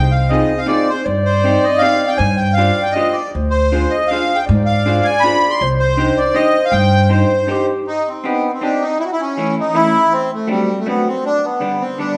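The recording sounds like a band playing live in one room, set in a lush large-studio reverb with a soft, rounded top end. It is a bittersweet, nostalgic musette waltz in C harmonic minor at 159 BPM in 3/4, with a swing on the eighths and a rubato pull. Up front, a reedy, sweet accordion with light tremolo tuning carries the melody throughout, while a distant, soft-edged clarinet in classical style adds a roomy second line until 7.9 seconds. Beneath them, a woody pizzicato upright bass with steel strings sits forward in the mix until 7.2 seconds, and a clean, picked electric hollow-body guitar with a dusky vintage tone supplies the accompaniment. The harmony moves through Fm7, Cm/G, G7sus4 and Dm7b5 to Cmadd9, then turns toward A, D7 and G before the passage breaks off, cut from a longer piece.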